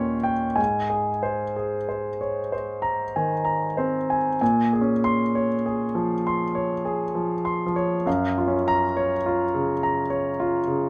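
Set in a slow, rubato 3/4 at 46-51 BPM, this nocturnal, wistful fragment of impressionist classical solo piano sits in Bb minor, drifting from Eb6 and Abadd9 harmonies into a new section at 4.4 seconds that moves through Bbm9 and Gbmaj7. A single clear concert grand spans Eb2 to C6, its deep bass and long sustain set intimate and up front, with audible action noise and a polished, present tone. Light reverb surrounds the instrument until the excerpt breaks off at 10.9 seconds.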